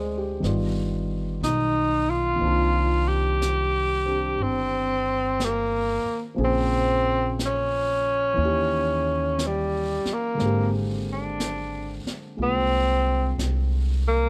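Tender and intimate, this slow swung jazz ballad features a mellow, subtoned tenor saxophone with light vibrato singing the melody up front, over a concert grand piano with deep bass comping through rich extended chords, a woody, growly pizzicato upright bass, and a jazz brush kit with a high-tuned snare that enters at 0.4 seconds, all in a dry sound cut from a longer piece.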